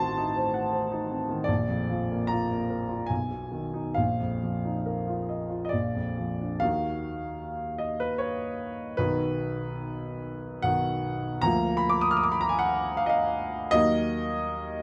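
A warm, vintage-toned grand piano plays alone from the start, up front and smooth, its long sustain blooming in light reverb in this wistful, melancholic romantic nocturne in three-four time. The rubato phrasing spans deep bass to high treble, opening on a diminished chord that leans toward Bb, before a new section begins at 6.6 seconds, moving through B and Bb/D and settling home at 13.7 seconds. This brief passage is cut from a longer piece.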